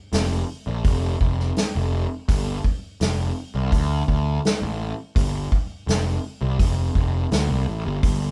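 A fuzz-drenched picked electric bass holds down the low end of this short cut from a longer psychedelic rock piece, its overdriven, round tone sitting up front in a low register from about 0.1 to 8.3 seconds. A soft-mallet drum kit plays alongside on hi-hat, punchy kick and a medium-tuned snare, sounding distant and roomy. The straight 4/4 feel and light reverb of a band playing live in one room give the passage a trippy, hypnotic mood.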